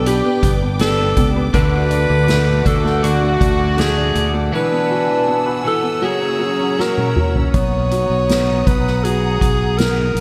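A dreamy, reverb-soaked hall sound with a touch of small-room ambience frames this heartfelt pop ballad excerpt at 80 BPM, where a breathy alto saxophone carries the melody up front with jazz-style vibrato and subtone over a distant French horn section's second line that ends at 7.1 seconds. A clear grand piano with subtle chorus and a lush, bowed string section hold the harmony through chords from G to Bmaj7, while a twangy twelve-string electric guitar plays arpeggios in the background, with ensemble chorus and diffuse delay, until 8.0 seconds. A bright, punchy fretless bass anchors the low end, and a soft-mallet drum kit with a boomy kick plays a fill at 6.8 seconds.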